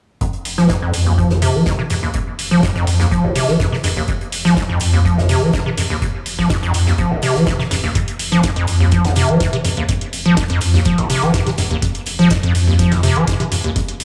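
A straight 4/4 pulse at 124 BPM drives this raw acid house excerpt, where a squelchy, resonant square-wave acid bass riff sits up front with overdrive, analog chorus, cassette tape and tape echo, over a round sine sub bass pumping with sidechain and tube saturation, a dry, deep analog kick, metallic electronic hi-hats entering at 0.5 seconds, and an airy acoustic kit of hi-hat and medium-tuned snare tucked in the background, all set in a dreamy, reverb-soaked mix with a moderate plate reverb.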